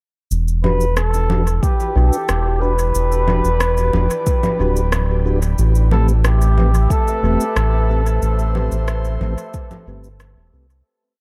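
Ambient dub at 91 BPM with a spacious, hazy mood, where a round, dark analog bass line sits up front under a soft, slow overdriven kick and a sparse, echoing beat of electronic shaker, low conga and rim click, while a veiled, bucket-muted trumpet plays distant call phrases with light vibrato, a mellow tonewheel organ adds off-beat stabs through a fast rotary speaker, and an airy pad with chorus drifts in the background from Em7 to Am9 at 5.6 seconds, joined at 6.1 seconds by a held, wind-like high note before the whole piece fades out from 7.3 seconds.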